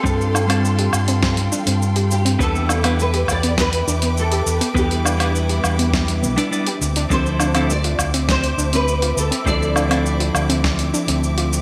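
Smooth and relaxed, this sunset chillout excerpt sets a fingerpicked nylon-string guitar melody, with audible finger squeak, over a clean, compressed electric guitar and a soft, round synth pluck playing arpeggios, each bathed in delay and shimmer reverb. A lush, bowed string section holds sustained chords, while an up-front, dark, overdriven fingered electric bass anchors the G9sus4, Em7 and Dm9 changes alongside a deep, tape-warm electronic kick and a gritty sampler-style kit of cabasa, hi-hat, snare drum and woodblock. The sound is bright in a 1980s digital style and soaked in wet hall reverb.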